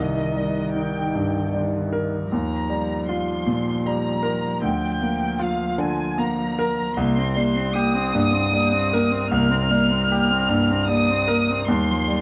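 Neoclassical piano and strings in C minor, melancholic and longing, moving at a rubato 77 BPM in 3/4, where a bright, brilliant grand piano sits up front with the accompaniment while a warm chamber violin section carries the melody with light vibrato and soft, sul tasto bowing, and a single dark cello plays an intimate second line with an airy bow, all three parts sounding together through this 12.2-second section cut from a longer piece, over chords from Cm7 through Ebadd9 and Bb/D in a dark, warm production with light reverb.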